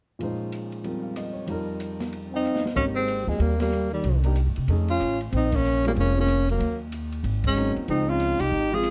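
A swung eighth-note feel in 4/4 drives this relaxed, swinging small-group jazz excerpt, cut from a longer piece and set in a dark, gently reverberant production. An open jazz kit, recorded in a small room with dark cymbals, a medium-tuned snare and a boomy kick, keeps time on ride, hi-hat, rim click and snare alongside a natural-sounding baby grand piano comping through rich extended chords. Around 2.3 seconds a mellow, whispered trombone enters on a soft-attacked second line, and a moment later the close-miked tenor saxophone takes the melody up front with a clear, subtoned vibrato. A short drum fill at 2.4 seconds leads into the next section, where a woody, thumpy gut-string upright bass joins at 2.8 seconds, plucked and prominent in the mix. From there the full band punches out several accents as the harmony moves through lush major-ninth and altered dominant colors.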